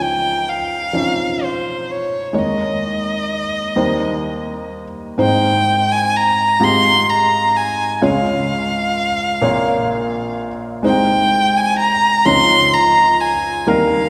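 A lush concert-hall reverb with a 2.4-second tail surrounds this short cut from a longer acoustic folk-pop ballad, recorded in a church or hall. At a slow 42 beats per minute in 6/8 with a straight feel, the music sits in Ab major and carries a hopeful, tender mood. A single bowed violin, placed up front, sings the melody between C5 and C6 with a warm tone, vibrato, soft attacks and expressive portamento. Beneath it, a felt-muted upright piano plays the accompaniment from Ab1 to Db5, its mellow, intimate sound marked by short sustain and audible action noise. The harmony opens on Dbadd9 and moves through Eb7sus4 and Eb6. A second passage begins at 5.2 seconds on Ab, passing through Fmadd9/Ab, Db, Bbm and Ab/C before returning to Dbadd9 at 12.3 seconds.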